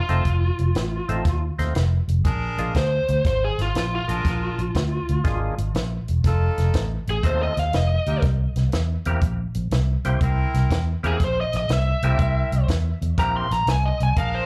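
Rollicking and laid-back, this electric blues shuffle at 121 BPM swings along as an overdriven, dark lead guitar through a small cranked amp solos with slapback echo from start to finish, over a percussive tonewheel organ with key click and slow rotary speaker, a round, foam-muted vintage electric bass sitting up front, a dry compact cocktail kit with a high-tuned snare and punchy kick, and a clear, distant saxophone section adding tight stabs from 2.2 s, all captured in a live club through the venue's PA.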